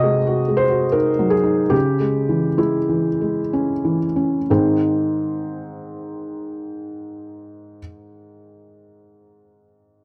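Neoclassical minimalist piano in 3/4 and Ab major, this tender, hopeful excerpt from a longer piece moves with a rubato feel between 61 and 91 BPM, slowing down over its first 4.5 seconds before settling on an Ab chord. A felt-muted upright piano plays alone across the whole 10 seconds, spanning Ab2 to Eb5 with a soft, mellow, intimate tone that sits up front. The dry, close sound recalls a 1970s studio, with the chords passing from Ab7/C to Dbm before resolving.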